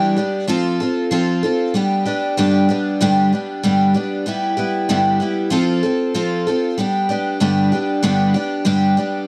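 A picked twelve-string acoustic guitar plays alone from the very start, its octave-doubled strings giving a bright, shimmering sound that sits up front. The style is rock in G mixolydian at 95 BPM in a straight 4/4, with an open-road, nostalgic mood. The guitar moves through F, G, Em7/G, then F and G again, spanning G2 to A4, and finger squeak is audible in its playing. Light reverb touches the guitar, while the dry, close 1970s-style studio sound keeps it intimate and present. Cut from a longer piece, this short passage runs for 9.3 seconds.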